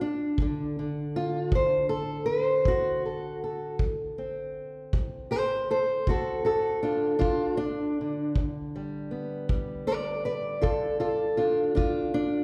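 Gritty and laid-back, this short cut from a longer acoustic country blues piece moves at a slow 53 BPM in 12/8, with an up-front, fingerpicked old ladder-braced acoustic guitar carrying the melody from D2 to D5 in a dark, woody, boxy voice of old strings touched with slapback echo, while a tight, distant kick drum played with brushes joins at 0.4 seconds, all set in a wet recital hall reverb heard from further back in the room as the harmony shifts from D7 to G7 at 8.4 seconds.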